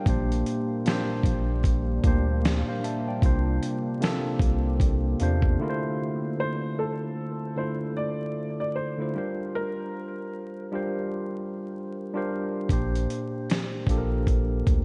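A soft, felt-muted upright piano with audible action noise carries the melody from 6.4 to 12.7 seconds in this hazy, nostalgic lo-fi hip hop excerpt at 76 BPM in D minor, over a clean tine electric piano with cassette-tape coloring, a dark, detuned ambient pad that stops at 6.4 seconds, and a round dub sub bass and gritty, compressed sampler-style drum kit with a thumpy kick that break off at 5.6 seconds and return at 12.7 seconds, all set in light reverb with vinyl crackle.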